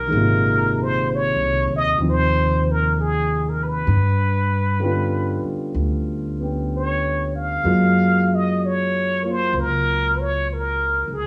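This is a wistful, melancholic jazz ballad at a slow 64 BPM in 4/4, with a triplet swing on the eighth notes, cut from a longer piece. A trumpet with a plunger mute carries the melody up front, its brilliant yet muted tone shaded by a wah-wah inflection, light vibrato and a punchy, forceful jazz attack, though it also sounds somewhat distant and roomy. Underneath, a concert grand piano supplies the accompaniment with a warm, open sound, deep bass and long sustain. A pizzicato upright bass on steel strings adds a woody, growly low end. The harmony moves from Ab69 to G7#11 at 3.9 seconds and settles on Gbmaj9 at 7.6 seconds, all within a moderate club-style reverb that gives the trio a natural sense of space.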